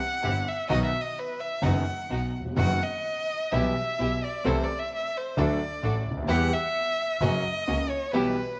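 Dramatic and melancholic, this brief rubato tango excerpt in E minor at 129 BPM opens with an expressive, up-front violin solo, bowed with soft attack, vibrato and portamento, over an intimate concert grand piano whose deep bass and audible action noise give it a vintage air, while a bowed double bass with a focused, smooth top anchors the low end and an earthy chamber string section adds background stabs, all set in a moderate echo chamber reverb as the chords move from C and B through Em/B, Am/C and D to Em and F#.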